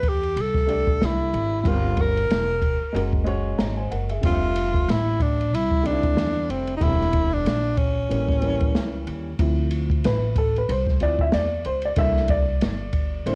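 A breathy, whispered tenor saxophone, close-miked and up front with vibrato, a soft attack and plate reverb, carries the melody of this nocturnal, smoky jazz-hop fragment until 9.1 seconds, when the vintage-toned upright piano takes a mellow solo from 9.4 seconds. Beneath it, the piano's woody, reverb-touched chords with audible action noise sit beside a thumpy pizzicato upright bass on gut strings, colored by transformer saturation, and an open jazz kit in a small room with dark cymbals, a medium-tuned snare and a boomy kick, all swung on the 16ths. The whole cut is a home recording on cassette, wrapped in light reverb.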